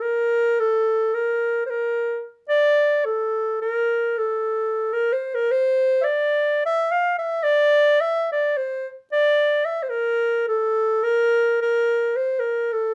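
A moderate small-room reverb surrounds this brief excerpt of Balkan folk music in free time, where a mellow, soft-attacked clarinet plays solo and up front in a classical style, ranging from A4 to F5 across its 12.9 seconds with a virtuosic, wild spirit.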